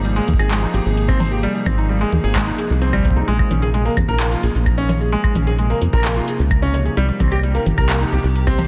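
A rubbery, resonant acid bass sits up front in this melancholic, intricate IDM fragment at 130 BPM, joined by a felt-muted upright piano playing delayed arpeggios with audible action noise, a hollow, flute-like pad holding chorused chords in the background, a booming analog drum machine with metallic hats, claves, handclaps and toms driven through overdrive and tape echo, and an overdriven electronic kick entering at 0.3 seconds, all moving through Abmaj7, Bbm7 and Cm7 in a dense, heavily limited modern master with light digital reverb.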